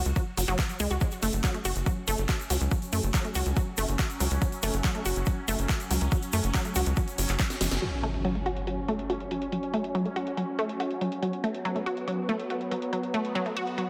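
A driving straight 4/4 pulse at 141 BPM anchors this hypnotic, psychedelic trance passage in F# minor, cut from a longer piece. A punchy, up-front electronic kick and a tight sawtooth sequencer bass with a fast, decaying filter pluck carry the groove through the first 7.8 seconds. Around them, a techno kit adds handclaps along with a cracking snare, metallic hats and crash cymbal, these last three softened by low-pass filtering, while a grainy egg shaker sits distant in the background. A lush, detuned unison pluck with a noise layer and bright, short-decay attack plays the riff with sidechain pumping and delay, and a bubbling, resonant stepped-filter texture holds sustained chords with chorus, reverb and its own pumping. A drum fill and band accent lead to an electronic impact at 7.8 seconds, opening a second section where a filter sweep moves across the synth arpeggio sound, all within a dense, heavily limited modern master with light reverb.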